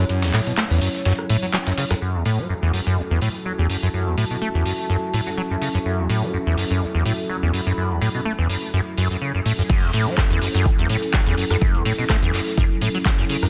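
A squelchy, resonant liquid acid bass riff with overdrive and dub echo leads this raw, driving acid house excerpt, its filter sweeping through the middle passage from 2.0 s, over a moody, detuned dark analog pad pumping against the sidechain, a punchy analog drum machine with crash, handclaps, hi-hat and rim click, a very quiet, gritty sampler-style soul kit of hi-hat and fat snare, a nostalgic, warbling tape-like pad in the background from 2.6 s, and an up-front electronic kick that lands at 9.7 s for the drop.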